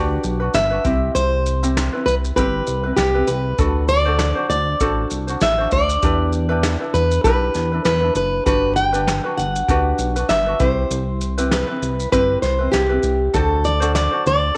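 A lightly swung sixteenth-note groove in 4/4 carries this carefree, easy-going acoustic pop excerpt, where an up-front, full-bodied fingerpicked jumbo steel-string guitar sings the melody over a light fingerpicked ukulele, a dark, glossy chorused synth bass with a saturated pulse-and-sawtooth pluck, and a vintage brush kit of punchy kick, snare and shaker with a rolled-off top, the harmony cycling through Gmaj7, Cmaj7, D7 and Em7 within a moderate spring reverb.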